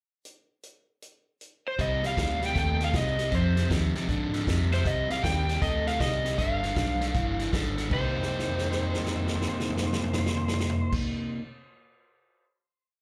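Heard through a club PA with light room reverb, this brooding, soulful electric blues shuffle opens with a vintage drum kit alone, its dark cymbals, punchy kick and rolled-off top driving a double shuffle groove from 0.2 seconds. At 1.7 seconds a dark overdriven slide guitar played with fingerpicks begins stating short song-like motifs. At 1.8 seconds a biting, bright overdriven guitar enters with a picked boogie figure on root, fifth and sixth, joined by a round, foam-muted electric bass walking underneath, both guitars carrying slapback echo. The head moves through minor chords to a tense dominant before settling on a final chord at 7.9 seconds, and from 8.1 seconds the drums roll through a fill until nearly the close.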